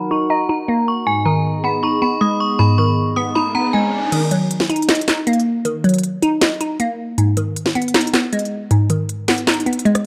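A ringing, inharmonic FM bell carries the melody over a crystalline, detuned wavetable pluck and a hollow, flute-like pad in this melancholic, menacing half-time trap excerpt at 157 BPM in Eb minor, with a filter sweep on the pluck and an electronic riser from 3.2 seconds leading to 4.1 seconds, where the pad and bell stop and a tape-warm trap kit of sharp snare, crisp hi-hat, rim click, handclaps and crash cymbal joins the pluck over Ebm and Abm in a dark production with light reverb.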